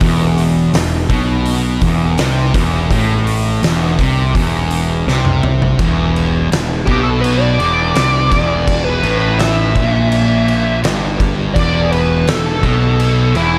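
An up-front fuzz lead guitar, dark and compressed and soaked in wah, distortion and digital delay, takes a solo from 6.9 seconds over this brooding, hypnotic stretch of stoner and doom metal, cut from a longer piece in E minor at a straight 83 BPM in 4/4. Beneath it, two picked fuzz guitars grind out the riff from the start, one compressed and the other thick and set in the background, both distorted and low in range. A fuzz picked electric bass, direct and amped with overdrive and tube saturation, adds weight an octave down. An oversized low-tuned acoustic drum kit sits up front in a bright stone room that pumps, with a punchy kick, fat snare, dark cymbals, hi-hat and toms, and a drum fill from 5.1 seconds leads into the second section. The production is dark with light reverb, moving from an E5 power chord into E minor as the second section begins.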